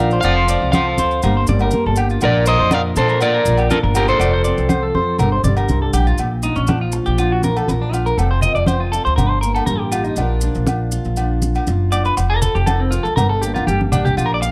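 A carefree highlife guitar-band excerpt in Bb major at 120 BPM opens with a slightly broken-up electric guitar carrying the melody through spring reverb and analog delay until 5.5 seconds, over a dark fingerpicked steel-string acoustic guitar, clean electric-guitar arpeggios colored by phaser and delay that become a solo from 6.2 seconds, a woody, up-front pizzicato upright bass, bright close congas, grainy maracas and ringing agogo bells set in the background, all in light reverb.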